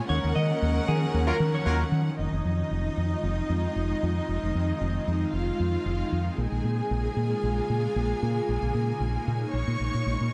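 A round, punchy fingered electric bass sits up front in this sultry, driving disco excerpt, carried by a close, lush bowed string section and a cloudy, detuned granular pad with its own built-in reverb. A clean, picked electric guitar plays a brief opening solo from 0.1 to 1.8 seconds over Ebm9, with distant, roomy horn stabs doubled in octaves landing at 1.3 seconds. At 2.2 seconds the music moves through Fm7 and Bbm7 in a dry, small-room sound typical of the 1970s.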